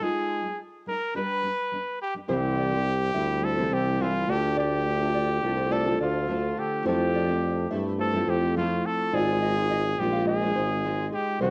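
A bright, punchy trumpet carries the melody up front from the opening, close-miked and singing in a pop style with a cassette-tape tint, in this heartfelt, easy-going acoustic pop excerpt at 105 BPM in a straight 4/4. Beneath it, a double-tracked nylon-string guitar sits in the background, fingerpicked and full-bodied with a deep classical tone and audible finger squeak. At 2.3 seconds the arrangement fills out: a solo tuba takes the bass with a light vibrato, a second, darker and smaller nylon-string guitar adds fingerpicked arpeggios higher up, and a reedy, clean electric piano with fast tremolo murmurs very quietly through its built-in speakers. The harmony moves from Ab6 and G into C, Dm and Fmaj7 before returning to Ab6. Light reverb and a small room ambience give the whole a homespun, cassette-recorded intimacy.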